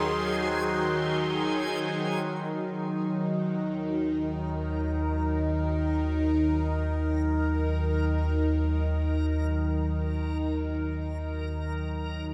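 Ambient music in free time and Eb dorian, spacious and melancholic, resting on an Eb minor chord in a wet echo chamber with long, echo-heavy tails. An evolving, detuned wavetable pad holds bright, up-front chords through a phaser, its filter sweeping from 2.2 s, over a round, deep analog bass on a single low Eb that fades out in the opening 2.2 s. A reedy alto flute with vibrato and tape echo sounds briefly in the background at the start, while a reversed, granular, dreamy texture fades in from 2.2 s and sustains until the cut at 12.3 s.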